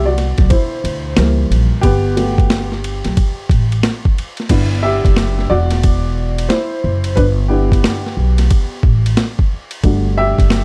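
A dark, slightly detuned upright piano carries this smooth, relaxed jazz-hop excerpt, its mellow, worn tone and audible action noise up close as it solos over chords moving from Cmaj9 through C#dim7 and Gmaj7 before settling on Em11 at 4.5 seconds. A woody pizzicato upright bass holds down the low end at 90 BPM, and at 0.2 seconds a gritty, compressed, pitched-down boom bap drum kit joins with a thumpy kick, high-tuned snare, hi-hat, ride and crash, swung on the sixteenths. The dry, dark production keeps every part up front, with the whole piece tuned slightly sharp to A4 = 441 Hz.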